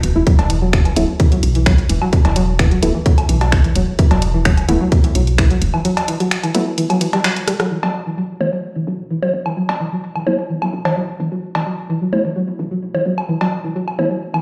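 Minimal techno at 129 BPM with a clinical, hypnotic pull, this cut from a longer track rides a twangy, string-like resonator pluck riff up front, chorused and tape-echoed over a soft, woody FM bass, with both pumping against the sidechain, while a muted, detuned dub chord stab sits deep in the background under filter sweeps. A tight electronic kick drops out at 5.5 seconds, and the garage kit's finger snaps, bright hats and rim clicks stop at 7.7 seconds after a break, an accent and a drum fill. Echoing cowbell, woodblock and bongos carry on with the pluck, bass and stab as the harmony moves from E5 to Esus4. The mix sounds like a big sound system in a bare room, with a short small-room reverb and a large studio tail.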